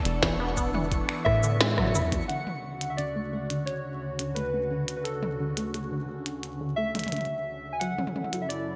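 Warbly, nostalgic lo-fi synth keys carry the melody up front in this wistful, intricate IDM excerpt at 87 BPM in D major, over a swirling phased analog pad with vintage 12-bit sampler grit, a prominent glitchy drum kit of tiny snare, clicky hats, finger snaps, rim clicks, shaker and toms in gated reverb, and a mellow, saturated acid bass arpeggio with lush chorus and a filter sweep from 2.3 s; through a drum fill from 1.3 s and a band accent around 1.6 s, until about 2.3 s, a deep electronic kick, a bouncy, rubbery square bass and a faint twinkling granular texture also play, the whole set in a bright 1980s-style digital sound with moderate plate reverb.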